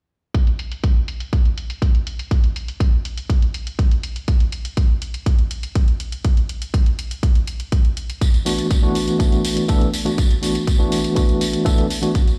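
A punchy, up-front electronic kick drives this feel-good, groovy nu-disco excerpt, cut from a longer piece, with bright, layered electronic hi-hats softened by a low-pass filter riding quietly alongside it from 0.3 seconds. For the first eight seconds the drums carry the groove on their own in a straight 4/4 pulse, with a small room ambience around them. At 8.2 seconds a band-limited, vintage-toned tambourine joins, and moments later a worn, slightly out-of-tune tine electric piano arrives up front on an E9sus4 chord, heard through a combo amp with medium tremolo, sidechain pumping and tape echo. The whole track sounds as if played on a big sound system in a bare room, with a stony reverb hanging over it.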